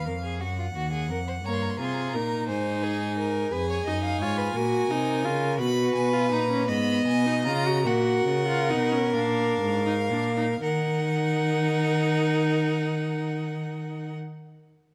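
An up-front cello, smooth-topped and even with steady vibrato, anchors the bass of this solemn, contemplative baroque-style fugue for string quartet in a straight 6/8, cut from a longer piece. A distant first violin carries the melody with light vibrato, a rich-toned second violin weaves a second line beneath it, and a clear, focused viola joins with accompaniment at 1.5 s. The playing slows between 4.6 and 10.6 seconds as the harmony darkens toward minor, all set in a moderate recital hall reverb.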